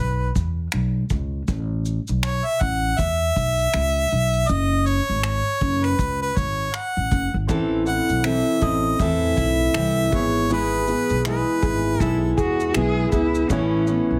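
A clear, close-miked harmonica with light vibrato and scooped notes carries the melody over a woody, thumpy pizzicato upright bass in this heartfelt, easy-going acoustic pop excerpt with a swung sixteenth feel, soon joined by an airy small-room kit of finger snaps, punchy kick and shaker; at 7.5 seconds a full-bodied fingerpicked jumbo steel-string guitar, a very quiet upright piano with long sustain and a small nylon-string guitar playing background arpeggios arrive, and at 12.0 seconds a focused bowed cello adds a second line, the mix carrying light reverb and a heavily compressed radio sound.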